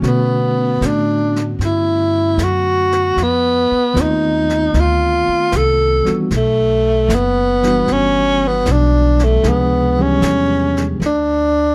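A dry, close 1970s-style studio sound frames this intimate, smoky jazz ballad in B minor, cut from a longer piece and moving at 76 BPM with a gently swung 4/4 feel. Up front, a breathy tenor saxophone enters at 0.1 seconds with a mellow subtone, soft attack and vibrato, carrying the melody through a touch of slapback echo. Beneath it, a clean tine electric piano heard through its built-in speakers accompanies over Bm9, F7#11, Em9 and C#m7b5 until 11.0 seconds, while a woody pizzicato upright bass and a brushed drum kit with a medium-tuned snare and hi-hat play on to the end.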